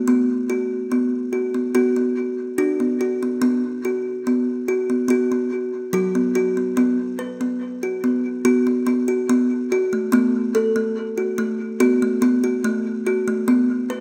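A steady, straight 4/4 pulse at 72 BPM gives this meditative world piece a gentle, unhurried calm. A solo kalimba carries everything from 0.0 to 14.0 s, moving between F#3 and B4 with a woody, hollow-box character and short, bright thumbnail plucks set up front. A diffuse ambient delay trails its notes, while a moderate echo-chamber reverb of 1.7 s and a small-room ambience add space around the sound. The harmony opens on Bm, shifts to B5 at 3.4 s, and settles on F#madd11 when a second section begins at 6.8 s. Tuned to A4 = 444 Hz, this short excerpt is cut from a longer piece.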